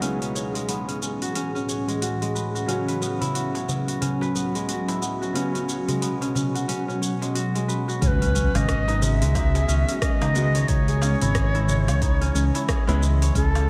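A breathy, reedy ney carries the melody from 8.0 seconds, its vibrato tinged with vintage sampler grit and delay, floating over a meditative, mystical organic downtempo groove at 90 BPM in C# minor. Ringing, fingerpicked kora arpeggios, an ethereal detuned pad with ensemble chorus and sidechain pumping, a soft felt-muted upright piano with audible action noise, and an overdriven afro-pop kit with metallic hats and rim clicks set the mood from the start, before a crisp metal-shell darbuka joins at 3.2 seconds. At 8.0 seconds a smooth, up-front synth bass, a deep overdriven electronic kick and a very quiet impact arrive as the chords move to G#m7, all set in a dreamy wash of plate reverb in this excerpt from a longer piece.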